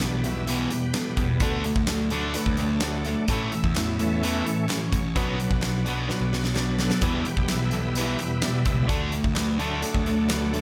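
A huge arena drum kit sits up front in this driving, brooding classic rock passage, its fat snare and punchy kick ringing in a big room, with a drum fill at 6.1 seconds. Beneath it, a fuzz-toned picked electric bass growls with an overdriven, direct-amped warmth, while two bright, overdriven electric guitars play a picked riff from further back in the mix. A shouting tonewheel organ holds sustained chords through a slow rotary speaker, with chorus vibrato, light overdrive and audible key click. A brilliant concert grand piano with deep bass adds accompaniment in the background and breaks out with a fill at 1.9 seconds, and a very quiet, hollow group handclap sounds from a live room. The chords move from Em through D, A and Bm before returning to Em and D, and the passage is cut from a longer piece, with light reverb across the sound.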